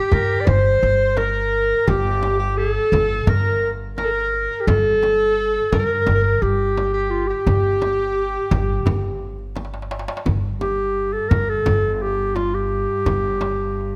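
A mellow clarinet opens this soulful, hypnotic Turkish makam ensemble piece in G makam huseyni at 86 BPM in a straight 4/4, carrying the melody up front in a classical style while a warm alto saxophone plays a jazz-inflected second line with vibrato alongside it. An upright bass sits prominently with a woody, thumpy pizzicato on gut strings. A crisp metal-shell darbuka and a deep, dry frame drum, both struck with hard hands, stay in the background. The saxophone drops out at 9.5 seconds, and a drum fill leads into a new section at 10.3 seconds, where a cello enters with a soft, intimate drone on G, its bowed sul tasto tone airy and slightly nasal with light vibrato. A light reverb gives the ensemble a little space, and the recording is cut from a longer piece.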